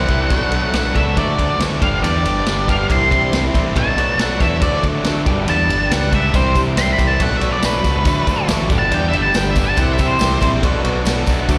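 Over a straight 4/4 pulse at 140 BPM, this carefree yet wistful indie rock excerpt features a dark, fuzzy octave-fuzz lead guitar soloing with slapback and tape echo until 10.5 seconds, backed by an overdriven guitar riff, a twangy twelve-string guitar with lush chorus in the background, an up-front growly fingered bass, a vintage drum kit with punchy kick, snare and ride, a very quiet brassy analog pad, and a jingly tambourine entering at 6.3 seconds, all cycling through Bm7, D, G and Cadd9 in the reverberant sound of a live gig heard through the venue's PA.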